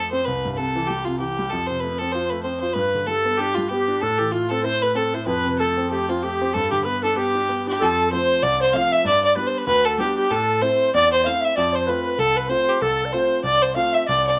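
A nasal, earthy fiddle with light vibrato leads this rollicking, cheerful Celtic folk cut in a swung 4/4, backed by an intimate concert grand piano with deep bass and audible action noise, while an airy wooden flute with a crisp attack joins as a second line at 2.8 seconds, all in a moderate studio ambience that moves through two sections over a C, F, G and Am progression.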